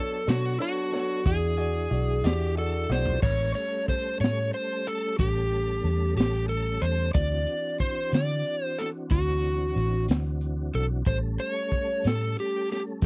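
Rollicking and swaggering, this slow blues in 12/8 moves at 61 BPM in A mixolydian, cut from a longer piece and captured as a dry, close 1970s-style studio recording. An overdriven slide guitar carries the melody up front, its dark, fingered tone ranging from F#4 to D5 and stopping at 12.8 seconds. A woody upright piano with audible action noise adds intimate accompaniment only in the opening 3.1 seconds, while a tonewheel organ holds smooth, clean chords through a slow rotary speaker and chorus vibrato, its key click audible. From 0.3 seconds a foam-muted fingered electric bass sits round and amped beneath, alongside a crunchy breakbeat kit entering at the same moment with a punchy kick, high-tuned snare, dark cymbals, hi-hat and toms, its gritty, saturated sound rolled off at the top. A drum fill at 2.9 seconds leads from the opening Bm7 and E9 into the A7, D9, A7 progression that carries the rest of the passage.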